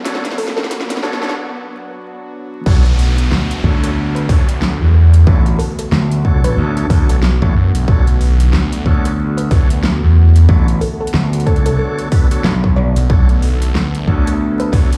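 Glitch hop with a swaggering, playful swing, this excerpt opens on a build-up of a warm chorused pad, a background riser and downlifter, overdriven tonewheel organ stabs with fast rotary grit and tape echo, a dubstep kit with a huge snare and metallic hats, and a woody, nasal wave-folded pluck melody, before the drop at 2.7 seconds brings in a punchy kick and a swirling, thick phased saw bass up front, joined at 3.6 seconds by a bright, overdriven slap bass, all over vinyl crackle and a bare-room big-system sound.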